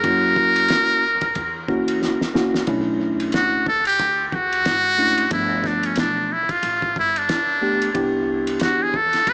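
A muted trumpet and a mellow tine electric piano open this nocturnal, smoky slice of jazz-hop together, riding a swung hip hop groove in four. The trumpet, buzzy and thin behind its metal mute with a soft attack and vibrato, sits up front and trails dub echo, while the clean electric piano comps chords through its built-in speakers until about 9.0 seconds. Underneath, a woody pizzicato upright bass holds the low end, and a cloth-damped drum kit of kick, snare, hi-hat and ride cymbal thuds along with a fat snare, dark cymbals and a gritty, saturated, rolled-off tone, its hits also echoing in dub fashion. A drum fill at 2.0 seconds leads into the muted trumpet's solo from 2.7 seconds, as the harmony moves through jazzy minor-eleventh, dominant-seventh and major-seventh colours. The echo-heavy mix, with light studio reverb and a small-speaker sound, leaves this short cut from a longer piece feeling hazy and late-night.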